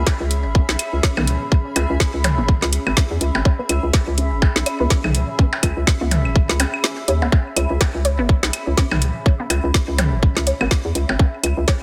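Quirky and clinical, this minimal techno excerpt moves at 124 BPM in 4/4 with a 16th-note swing, sitting on a single C#m7 chord in C# minor. An up-front electronic kick, tight and layered, anchors the groove alongside a garage drum kit of woody snare and metallic hi-hats, while electronic percussion blips, claves and toms sound as if re-recorded in a large room and trail off through a delay. A hollow, bouncy FM bass knocks out punchy, quickly decaying notes with tube saturation and sidechain pumping. Further back, a juicy, squelchy blip pluck plays a detuned, resonant riff through phaser, ensemble chorus, dub echo and pumping, with a filter sweep running across it throughout. A granular cloud pad adds a blurred, evolving haze with slow attack and long release in its own reverb, and the kick briefly drops out between 6.8 and 7.3 seconds before returning.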